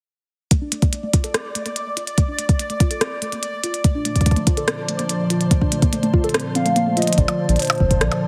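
A heavily compressed, radio-like sound with light reverb and a digital ambience frames this playful, intricate IDM excerpt at 144 BPM in 4/4, set in Bb major over a Bbmaj9 chord. A lo-fi, warbling pluck with a dark square-and-sawtooth tone, noise layer, filter sweep, lush chorus and tape echo spins arpeggios from the start. Beside it sit a soft, up-front electronic kick and a glitchy kit of clicky hats, percussion blips and rim clicks. A bright, bubbling texture with resonant random filter steps, chorus and reverb hovers on a single high note. At 3.8 seconds a glassy, ethereal FM pad with ensemble chorus and a long release spreads sustained chords across a broad register, and at 6.6 seconds a nostalgic lead with vibrato and portamento enters through chorus and tape echo. A drum fill heralds a new section at 7.2 seconds, where a round, deep analog bass with a fast attack and mellow, evolving tone anchors the low end.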